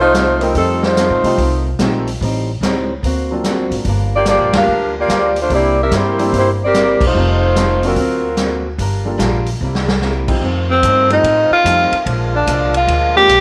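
Energetic and joyful, this big band swing excerpt at 146 BPM in F mixolydian puts a tight, up-front saxophone section with light vibrato on the melody over boxy, picked acoustic guitar, woody pizzicato upright bass, a distant drum kit with a boomy kick and rolled-off top, and an intimate grand piano whose action noise sits in the background. Band accents punctuate the line, and after a drum fill at 9.6 seconds a clear, soft-attacked tenor saxophone takes a solo from 10.7 seconds over mellow sustained chords from a second saxophone section, all in moderate plate reverb with small-room ambience.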